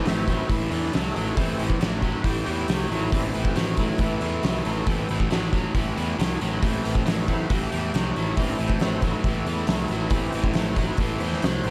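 An overdriven tonewheel organ, thick and gritty through a slow rotary speaker with chorus vibrato, holds sustained chords as the featured solo voice over a crunchy, double-tracked guitar riff from the very start, joined at 0.1 seconds by a growly fuzz bass and an oversized, low-tuned drum kit with a fat snare and punchy kick, driving a smoky blues rock and southern rock groove in A minor at 137 BPM, with the saturated drums up front in a bright stone room under light reverb.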